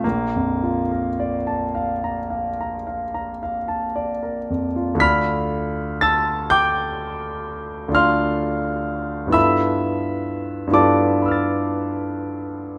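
A clear, intimate concert grand piano, up front with deep bass, long sustain and audible action noise, plays this hazy, nocturnal impressionist solo in a slow, rubato 9/8 at 35-44 BPM, tuned to A4 = 439 Hz and spanning Bb1 to B6, moving from Bbmaj7 to Dm6 at 5.0 seconds and G13 at 9.3 seconds inside a wet stone-room reverb, in a 12.8-second fragment cut from a longer piece.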